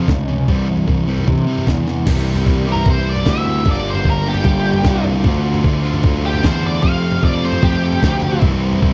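A dry, close 1970s-style studio sound frames this restless, cool indie rock cut at 151 BPM, where a bright, double-tracked fuzz guitar riff and a punchy, up-front fuzz bass drive over a gritty, pitched-up breakbeat sampler-style kit with a thumpy kick and high-tuned snare. A drum fill at 1.9 seconds leads to a very quiet, mellow combo organ with light vibrato holding sustained chords from 2.1 seconds, and a dark octave-fuzz lead guitar with slapback echo carries the solo melody from 2.7 seconds over C7, Gm7, Dm7 and Fadd9 changes.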